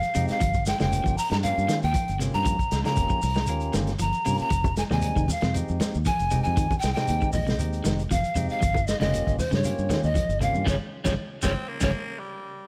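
An airy, close-miked pan flute carries the melody up front in this intense, driving afrobeat excerpt at 117 BPM, its tongued notes showing chiff and vibrato. Beneath it sit slightly broken-up, picked electric guitar arpeggios, a fat, lightly overdriven tonewheel organ with percussive attack and a stopped rotary speaker, and a dark, round, foam-muted fingered bass, while a muffled, lo-fi vintage drum kit with a tight kick and a grainy shekere push the straight 4/4 groove over chords moving between Gm7b5 and Fm9. Bright, low-tuned congas join very quietly at 4.6 seconds, a band accent arrives at 10.7 seconds, and a raspy, gritty baritone saxophone enters at 11.4 seconds, the whole scene set in light reverb.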